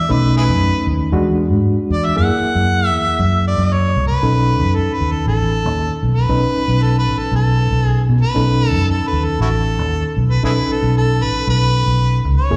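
A warm, overdriven harmonica struts out front with a jazz-style solo full of vibrato, tongue slaps and scooped notes, colored by slapback echo and analog delay, in this swaggering, laid-back straight-eighth soul blues cut from a longer piece. Beneath it, a reedy, gritty electric piano pushed through a combo amp shimmers with fast tremolo and slapback echo over B9, E9 and F#9 chords, while a dark, foam-muted fingered electric bass sits round and punchy up front from 0.1 seconds. The band sounds like a live gig heard through the venue's PA, with recital hall reverb, and after the harmonica's opening solo to 4.2 seconds the tune moves into a new section that runs to the end.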